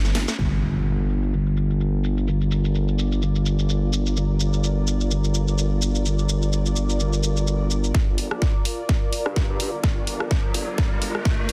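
A nasal, dark, saturated vowel-sweep wobble bass with chorus and sidechain pumping sits up front in this bouncy, gritty bass house excerpt in G minor at 127 BPM with a 16th-note swing, over a filtered garage drum kit of hi-hat, rim click, shaker and cracking snare, while an electronic impact lands at 0.4 seconds, a blurred, cloudy granular pad drifts in at 1.7 seconds, a punchy, tape-warm electronic kick drives the build-up from 7.9 seconds, and a riser lifts the final stretch from 9.7 seconds in a dense, heavily limited, dry mix.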